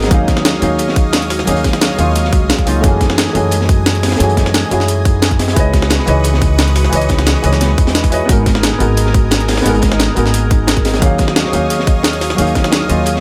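A dark, worn concert grand piano with audible action noise and tape echo provides accompaniment in this rolling, dreamy liquid drum and bass excerpt at 176 BPM through D#m9, F#m9, C#m9 and G#m9, over a woody pizzicato upright bass, a lush detuned unison pad with chorus and sidechain pumping, a buzzing kalimba playing arpeggios with dub echo in the background, an overdriven electronic kick and a gritty, pitched-up jungle sampler-style kit up front, and a crunchy, rolled-off breakbeat kit further back in a small room.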